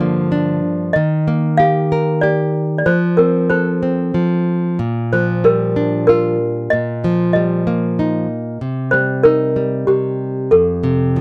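Tender and innocent, this brief lullaby excerpt is children's music in a gentle 3/4 lilt with a straight feel. A toy piano carries the melody throughout, its clanky, bell-like tone slightly out of tune, with the knock of wooden hammers and a surprisingly dark, smooth edge. Beneath it, a fingerpicked nylon-string guitar plays classical-style accompaniment, sitting up front with an acoustic warmth. The harmony drifts through Gm7, Ebadd9, F, Bb6 and Cm7 before settling back on F at 10.5 seconds. Both parts play together from start to finish in a dry, close recording with a 1970s studio character and a moderate booth ambience.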